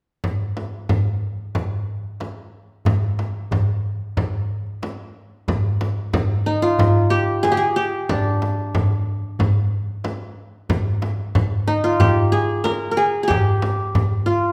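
A straight 4/4 pulse from a soft-handed clay darbuka and a small, bright, close frame drum opens this longing, melancholic Turkish makam ensemble piece in a reverberant recital hall at 0.2 seconds, before an up-front qanun enters at 6.5 seconds with warm, bright-edged, plectrum-plucked triple strings carrying the melody.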